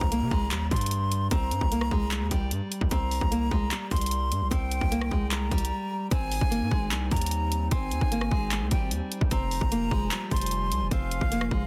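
Dense, heavily limited and set in a digital ambience, this eerie, brooding trap excerpt in C minor rides a half-time feel at 150 BPM, where an overdriven trap kit with a hard-clipped kick, bright hats, claps and rim clicks sits up front over a saturated, aggressive 808-style bass, while a small fingerpicked nylon-string guitar carries the melody through digital delay, a breathy jazz flute with vibrato and lifted highs adds an unsteady second line, a very quiet electronic impact opens the first 1.3 seconds, and after a brief break at 5.7 seconds a warbling, detuned lo-fi pad with chorus and reverb enters in the background at 6.1 seconds as the chords move to Abmaj7 and then Fm.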